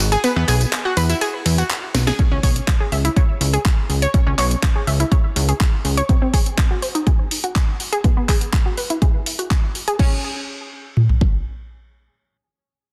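Progressive house at 123 BPM in C# minor, bittersweet and driving, cut from a longer piece, where a punchy, funky sawtooth bass with ring modulation and sidechain pumping sits up front until 6.0 seconds, a round, warbling vintage analog pluck plays arpeggios through chorus and tape echo under a filter sweep, and a layered house kit of handclaps, hi-hat, ride, tambourine, crash and a cracking, soft-clipped snare is joined at 2.2 seconds by a punchy, tape-toned kick and toms after a drum fill at 1.9 seconds, all in light digital ambience over chords moving from Eadd9 through C#5 and G#7, in a dense, heavily limited modern master.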